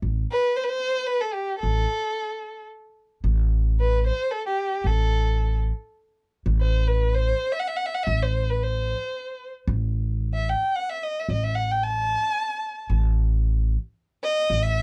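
The recording is dry and close, with the intimate, unadorned sound of a 1970s studio. Cut from a longer Arabic maqam piece in triple metre, it carries a melancholic, soulful mood. An upright bass anchors the low end from the very start, plucked on gut strings with a woody, thumpy tone that sits up front. A lone bowed violin enters at 0.3 s, singing the melody with rich vibrato and expressive portamento slides between notes. At 3.2 s the piece moves into a new section that carries on through to the end of this fragment.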